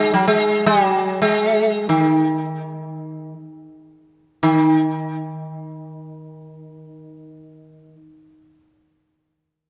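Meditative and longing, this brief fragment of Hindustani classical music unfolds in free time as a solo sitar, plectrum-plucked and placed up front, plays between Eb3 and Ab3 until 7.9 seconds, its buzzing, round tone and shimmering sympathetic strings carried by a moderate concert-hall reverb within a dark production.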